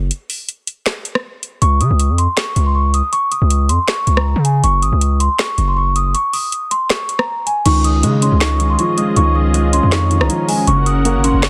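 Triumphant yet wistful, this half-time trap hip hop excerpt opens on a heavy, saturated 808-style bass and an electronic drum kit with a woody snare, metallic hats, handclaps, rim clicks and crash, roughened by vintage 12-bit sampler grit. A bell-like celesta with delay enters at 1.6 seconds, carrying a sweet, ringing melody high above. At 7.7 seconds a dark, boxy baby grand piano with audible action noise and a smooth, warbling analog pad with chorus fill in the harmony, all held in a dry, dense and heavily limited modern mix.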